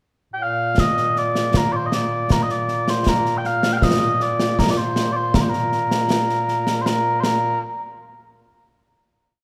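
Mellow small bagpipes open the piece at 0.3 s with a sweet, continuous, up-front modal melody full of ornaments and vibrato, joined at 0.8 s by concert snare drum and concert bass drum playing an acoustic marching snare pattern with bright cymbals, giving this proud, ceremonial Scottish pipe tune in Bb major a steady 79 BPM march feel in 2/4, set in a moderate concert hall reverb that carries the final note to its close at 8.4 s.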